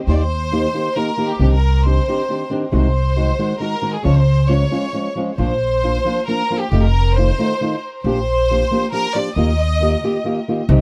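Mexican folk in the mariachi tradition, this proud, romantic excerpt moves in 3/4 at 136 BPM in Eb major, with a clear, smooth violin section carrying the melody from 0.1 to 10.2 seconds, its even, vibrato-rich bowing touched by tape echo. Underneath, a thumb-plucked flamenco guitar supplies acoustic accompaniment and a woody, pizzicato upright bass on steel strings anchors the low end, both running to 10.8 seconds, with the bass sitting loudest in the mix. The dry, close sound of a 1970s-style studio keeps every part up front as the harmony passes through chords such as Cmadd9, Ab7/C and F7 before settling on Ebadd9.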